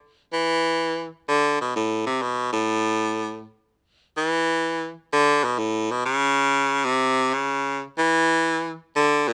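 An edgy, punchy baritone saxophone plays alone and up front from 0.3 to 9.3 seconds, its forceful jazz tone sitting between A2 and E3 and colored by vibrato. This warm, swinging jazz excerpt moves at 125 BPM in 4/4, with swung eighth notes. Close, detailed microphones and little reverb keep the horn present and dry.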